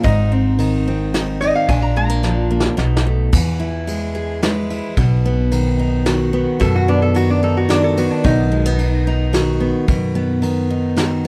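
A straight three-four pulse sets a sunny, nostalgic honky-tonk and classic country mood in this excerpt, carried by a bright, full-bodied dreadnought acoustic guitar, a woody pizzicato upright bass and a distant, roomy brush kit with a punchy kick. A nasal, metallic lap resonator guitar, played with fingerpicks and slide, opens with a solo phrase before a drum fill at 2.2 seconds, then returns as a second line from 6.6 seconds. The guitars and bass sit up front in a dry mix.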